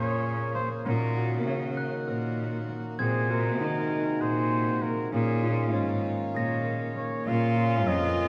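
Hypnotic and pensive, this short excerpt of contemporary chamber music moves in an uneven 7/8 at 197 beats per minute in eighths, straight in feel and set in Bb minor. A clear flugelhorn carries the solo melody with light vibrato and punchy, scooped notes in a pop style, sounding distant and roomy against the ensemble. Beneath it, a clear, intense cello plays the bass line with vibrato, bowed and up front, while a close-miked, dry pedal harmonium breathes reedy, mellow, full sustained chords. A concert harp adds thumb-plucked arpeggios that ring out, and a glockenspiel struck with soft plastic mallets lends a bell-like, metallic shimmer in the background until 7.5 seconds. At 7.3 seconds a bright, biting viola enters with an airy bow for a brief second line as the harmony returns to Bbm7, all within a wet concert-hall reverb and a dark, warm production.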